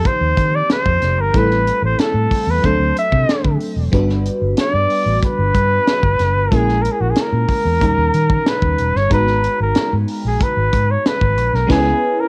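Polished 1980s jazz-funk pop at 93 BPM in 4/4, upbeat and urban, this cassette-recorded passage cut from a longer piece puts a clear, up-front flugelhorn melody with vibrato over a sparkling, bell-like FM electric piano with subtle chorus. A tight funk drum kit with a high-tuned snare and a foam-muted, round fingered electric bass drive the groove through chords moving from D#69 and Am7 to G#m9, before the band hits an accent at 11.7 seconds and lands on C#m7. The home recording carries light reverb and a vintage cassette tint.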